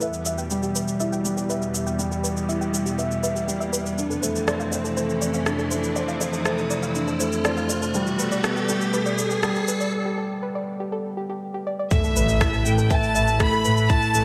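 A felt-muted upright piano, soft and dark with thick felt and a touch of tape echo, carries a riff up front in this moving, melancholic piano and strings electronica excerpt. Beneath it sit a thick, detuned unison pad with chorus, a gentle, nasal pluck arpeggio with 12-bit sampler grit, sidechain pumping, tape echo and a filter sweep, and a tape-warm electronic shaker and rim click. A riser builds from 0.5 seconds into a brief break; at 11.9 seconds the drop arrives with an electronic impact, a tight kick and a smooth chamber violin section on the melody, joined at 12.2 seconds by a focused, bowed double bass section with sidechain pumping, all bathed in a lush hall reverb with digital ambience.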